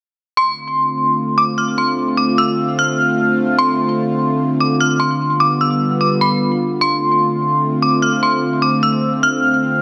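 Bathed in a lush hall reverb, this floating, blissful half-time hip hop fragment at 149 BPM sets an eerie, inharmonic FM synth bell melody, detuned and dark with chorus, phaser and tape echo, over a smooth, full-bodied sawtooth analog pad whose slow-attack chords drift from Dm7 to G7 at 5.2 seconds and back to Dm7 at 6.8 seconds.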